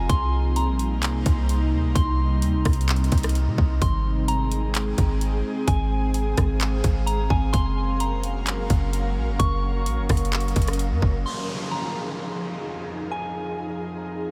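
Melancholic and hazy, this atmospheric cloud-rap excerpt moves at 129 BPM in a half-time 4/4 feel in F minor, with a soft, pure FM synth bell melody floating over an ethereal, airy pad with sidechain pumping and a calm, glassy texture of drifting overtones sitting in the background. An up-front trap kit with a hard-clipped kick, metallic hats, handclaps and rim clicks drives the groove alongside a deep, boomy 808-style bass, both dropping out around 11.2 seconds. An electronic downlifter then enters at 11.3 seconds as the harmony settles on Fm7, leaving the pad and glass texture ringing to the end.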